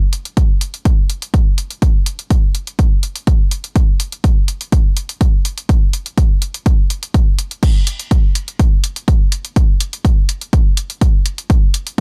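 A heavy electronic kick drum sits up front in this dark, hypnotic techno excerpt, entering at 0.4 seconds and driving a straight 4/4 pulse at 124 BPM. The kick is layered and produced, with a tape-warm character and the close feel of being re-recorded in a small room. Beneath it, a quieter electronic techno drum kit begins at 0.1 seconds, supplying crash cymbal and warm hi-hats that both carry sidechain pumping, so they breathe against the beat. The kit shares the layered, produced, tape-warm sound and the small-room re-recording. The whole passage stays in a single section through 12.0 seconds, with very little reverb, leaving the groove dry, tight and insistent.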